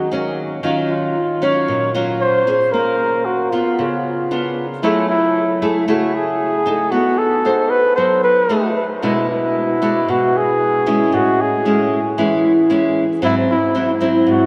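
This bossa nova piece, cut from a longer work, moves in a straight 4/4 with an intimate, smooth mood. A mellow flugelhorn carries the melody up front, played in a jazz style with light vibrato and scooped notes, its line touched by analog delay. Beside it, a fingerpicked nylon-string guitar supplies the accompaniment with an acoustic, classical tone, lush chorus and the occasional finger squeak. Both parts play throughout, and the harmony drifts through rich extended chords such as Ebm9, F#m9 and Amaj7 before settling on G#aug7. The mix is dreamy and soaked in a cathedral-sized reverb that gives the whole performance a floating, spacious glow.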